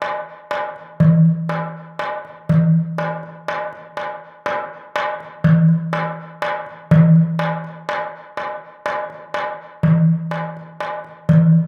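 Set in 9/8 at 123 BPM counted in eighths with a straight feel, this calm, peaceful Greek folk fragment, cut from a longer piece, rests entirely on a darbuka that plays throughout. The metal-shelled drum sounds crisp and high, sitting up front in a moderate, booth-like ambience with a short decay.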